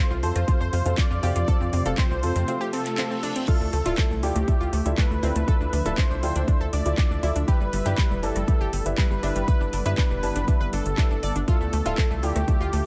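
Progressive house at 120 BPM in D dorian, dreamy and bittersweet, in which a thick, detuned, warbling unison lead with delay sings over a shimmering, ethereal pad, an analog pluck arpeggiating with chorus and delay, soft felt-muted piano stabs carrying 12-bit sampler grit, a tight, punchy sequencer bass, an overdriven house kit with metallic hats, handclaps, rim click and shaker, and a punchy, up-front electronic kick that enters at 0.5 seconds, with most parts pumping to the sidechain, a brief break at 2.5 seconds lifted by a faint reverse cymbal, and chords moving from F to Dmadd9 and G6 in a dry mix.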